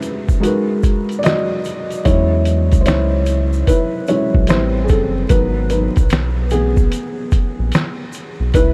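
Nostalgic and hazy, this lo-fi hip hop excerpt moves at 74 BPM in G# minor with swung 16ths. It opens on a break where a soft, felt-muted upright piano, with audible action noise and a cassette-tape coloring, settles on G#m9 over a compressed, muffled sampler-style drum kit of thumpy kick, fat snare, hi-hat and finger snaps, while a grainy egg shaker sits in the background. At 2.1 s a round, dark analog bass enters up front as the piano takes a solo over chords moving from E69 through Am7 to G#m7, all set in light reverb and vinyl crackle.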